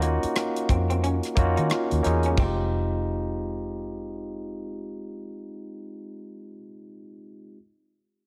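An 89 BPM groove in 4/4 with a 59% swing on the 16ths sets up this short neo-soul and R&B excerpt in F minor, introspective and smooth in mood. A tight funk drum kit sits up front with a dry, airy, polished sound, pairing a tight kick with hi-hat, rim click, splash cymbal and toms until it stops at 2.6 seconds, when the picked, slightly broken-up guitar in the background also drops out. Underneath, a vintage muted fingered electric bass gives a dark, round, punchy, foam-muted low end from F1 to Eb3, carrying on until 6.5 seconds. A bright, barky tine electric piano, lightly overdriven through a combo amp, holds the accompaniment between Ab3 and Ab4 and lasts longest, to 7.6 seconds. The harmony moves from Ebm9 to Fm9 at 2.4 seconds, all within light reverb and a small room ambience.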